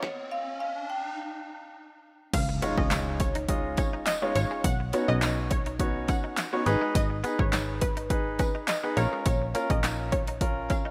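Dance-pop at 104 BPM, bittersweet yet confident, in which a woody marimba melody and an electronic riser over a dry, overdriven analog drum machine build up to the drop at 2.3 seconds, bringing an impact, a round, detuned analog pluck with chorus, tape echo and sidechain pumping, a snappy slap-like FM bass, a clear baby grand piano up front, a twangy clean electric guitar riff with ensemble chorus in the background, and a distant jingly tambourine, in a rough home demo mix with light reverb.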